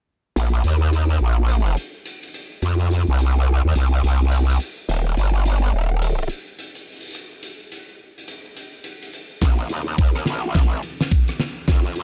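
A funky, playful slice of glitch hop cut from a longer piece, riding a swung 4/4 groove with a dry, close sound. A growling, aggressive bass carries the low end from the start, its wobbling, formant-filtered tone pushed up front with tube saturation, chorus and a bright, compressed edge. Beneath it, an oversized, low-tuned acoustic kit of hi-hat, rim click and fat snare sits quieter in the mix, gritty and saturated in a bright stone room that pumps. A break arrives at 7.2 seconds, and from 9.4 seconds a build-up with a drum fill brings in a layered electronic kick, overdriven and knocking, placed up front until 11.8 seconds.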